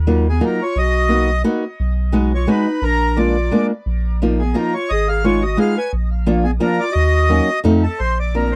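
A reedy, full accordion carries the melody through a touch of tape echo in this nostalgic, whirling musette waltz at 175 BPM in 3/4, with a mellow clarinet adding a soft-attack second line full of vibrato and scooped notes in a jazz style until 7.6 s. Up front, a boxy, fingerpicked old ladder-braced acoustic guitar, finger squeaks and all, provides the accompaniment, while a round, deep, dark analog bass with a filter sweep anchors the low end. The short cut from a longer piece has the dry, close feel of a 1970s studio, moving through chords such as Ebmadd9, Bmaj7 and Bb7 before landing on Bbadd9 at 8.0 s.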